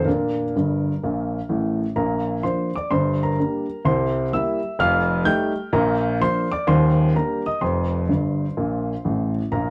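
A woody, intimate upright piano, its action noise audible and its notes sustaining long, carries this playful, swinging stride-jazz excerpt through a chord progression from Bb through Gm, C7, F9 and Ebmaj7, with fills at 0.5 and 8.1 seconds, all set up front in a dark production with moderate studio reverb.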